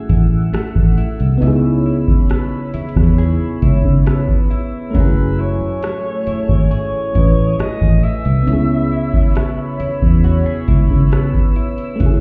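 A booming analog drum machine sets a slow, straight 68 BPM pulse in 4/4. Its deep kick, metallic hi-hats and rim clicks sit up front beside a round, dark fingered electric bass, both entering at 0.1 seconds. This passage, cut from a longer contemporary R&B piece, carries a longing, late-night mood as the harmony moves between F#m9 and C#m7. A soft FM electric piano with chorus and a fast, decaying attack plays accompaniment. A clean, compressed electric guitar, recorded direct, picks arpeggios under subtle chorus, while a shimmering, retro pulse-width pad holds sustained chords with a slow attack and a sub octave. From 4.9 to 9.8 seconds a warm alto saxophone carries the melody, distant and roomy, with vibrato and digital delay, and the mix sounds muffled, as if heard through a wall, shaped by stone room reverb and EQ.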